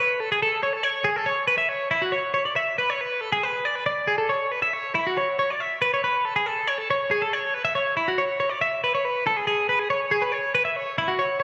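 A bright, twangy twelve-string electric guitar plays clean, compressed and up front with spring reverb, picking between E4 and E5 through this restless, wistful rock fragment in a straight 7/8 at 278 BPM in eighths, its sound carried by the moderate reverb of a large studio where the band plays live in one room.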